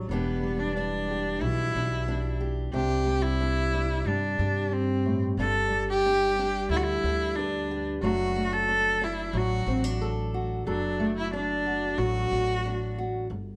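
A straight 4/4 pulse at 91 BPM carries this peaceful, nostalgic acoustic folk passage, where a fingerpicked steel-string guitar and a woody pizzicato upright bass support a rich, focused bowed cello melody played with vibrato up front, moving through Em7, Csus2, G and D/F# in the moderate reverb of a large studio.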